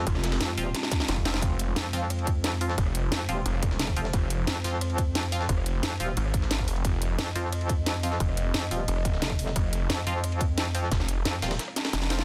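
A driving, straight 4/4 pulse anchors this aggressive, tense slice of dark technical drum and bass, cut from a longer piece and sitting on an F minor chord throughout. Up front, a layered electronic kit delivers a cracking snare, bright hats and rim clicks with overdrive, while a tight electronic kick, re-recorded in a small room, pounds beneath until it drops out at 11.6 seconds. Behind them, a very quiet, pitched-up breakbeat kit adds a gritty, high-tuned snare and ride cymbal with a tape-warm tone, and drum fills break in at 0.7 seconds and again near the close. The low end is a fierce pairing: a snarling, detuned sawtooth bass with distortion, a moving notch and sidechain pumping growls up front alongside a metallic FM wobble bass thickened by tube saturation and chorus. In the background, a deep, moody analog pad holds sustained chords with a slow attack, chorus and pumping, while a nasal, band-passed chord stab enters at 0.6 seconds with a filter pluck, phaser and dub echo. 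The digital ambience is dense, and the master is heavily limited and loud.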